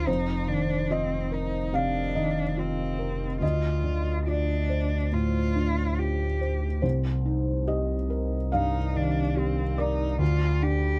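Close, detailed and nearly dry, this 11-second neoclassical fragment in C minor drifts at a rubato 71 BPM with a longing, reflective mood, built on an intimate felt-muted upright piano accompaniment whose mellow tone and audible action noise sit up front, while a single bowed cello adds a focused vibrato second line and a deep, saturated sine sub bass sustains beneath chords moving from F7sus4 through Dm7 and Cm7 to a rootless Bb/D.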